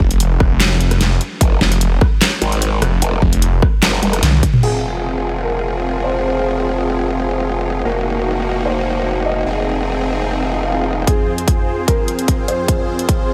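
Chaotic and menacing, this heavy wobble dubstep cut from a longer piece runs at 149 BPM in 4/4 with a half-time feel, rooted in F phrygian. It opens on a drop where a snarling, detuned sawtooth bass grinds against a punchy, overdriven electronic kick and a layered dubstep kit with a deep snare, hats, claps, rim clicks, toms and crash, capped by a drum fill that leads into the next passage at 4.6 seconds. A growling, wobbling bass shaped by a formant filter carries the low end through the middle stretch, while huge, lush supersaw chords pump against the beat over a progression of Fm, Ebm/F and Ab/F. Floating behind them, a soft, felt-muted upright piano plays a mellow melody with audible action noise and a diffuse ambient delay. A very quiet electronic swell sounds just before the drums return at 11.1 seconds for a closing build-up on Fm. The whole mix is dreamy and soaked in a huge ambient reverb.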